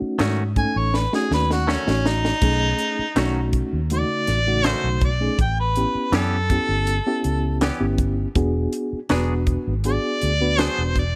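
Straight-eighth soul blues at 81 BPM in 4/4, gritty and rollicking, with a mellow harmonica up front carrying the melody over a small room ambience, its scooped notes and light vibrato giving it a vintage feel. A reedy electric piano with fast tremolo comps beneath, while a dark, round, foam-muted fingered bass anchors the changes from B9 to A9 to E9. A bright, twangy, direct-recorded clean guitar adds picked stabs, and a dry, tight funk drum kit with a high-tuned snare and bright cymbals plays a fill from 0.9 to 2.4 seconds in this short excerpt cut from a longer piece.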